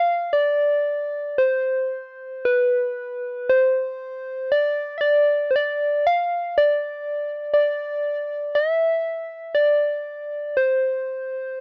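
A soft, round FM synth lead with a warbling chorus plays alone from the start, its struck, keys-like notes decaying between B4 and F5 in this nostalgic, wistful fragment of Celtic folk, which drifts in a rubato 3/4 around 59 BPM, moves into a new section at 1.4 s, and sits up front in a dry, close 1970s-style studio sound with light reverb.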